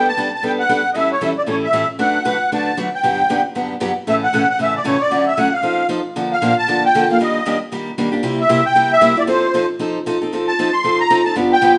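A reedy, shimmering musette accordion carries the melody up front from the opening second, over a bright, boxy picked parlour steel-string guitar accompaniment, in this playful, lively swing jazz excerpt at 231 BPM in D major, where the harmony turns toward Bbmaj7 and Ebmaj7 at 6.2 s and the live band sits in a moderately large studio room with a softened top end.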